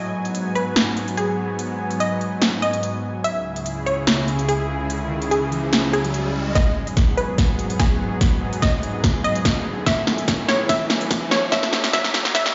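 At 145 BPM in 4/4, with a half-time feel and a light swing on the sixteenths, this cut from a longer heavy wobble dubstep track sits in G# phrygian and carries a menacing, heavy mood. A big-room dance drum kit arrives at 0.3 seconds with a punchy snare and crisp hi-hats, tape-warm and re-recorded in a large room. From the opening moment, just before the drums, a detuned sawtooth supersaw pad holds lush sustained chords up front with a slow attack and long release, pumping under sidechain compression. A unison sawtooth pluck with a fast attack and short decay carries the melody through cassette-tape colouring and tape echo, over chords moving from G#m7 to C#m, then to G#m7 and F#m7/A. Background risers and swells enter at 4.5 seconds, and at 6.6 seconds the second section begins with an overdriven, knocking electronic kick up front, alongside a build-up, a drum fill and a filter sweep. The mix sits in a moderate hall reverb, as if played through a big sound system in a bare room, with a high-pass filter trimming the lows and nothing above 7.5 kHz.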